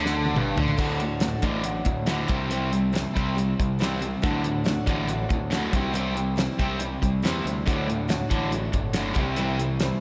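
Driving and sunny, this classic rock passage at 140 BPM in D mixolydian opens with a drum fill from a damped 70s kit, its fat snare, tight kick and dark cymbals up front, as crunchy overdriven guitar and a tight, distorted guitar with slapback echo play riffs from the very start over a growling, punchy overdriven bass, while a picked steel-string acoustic guitar enters at 0.8 s in the background as the chords move between D and C in a big arena sound with lush hall reverb.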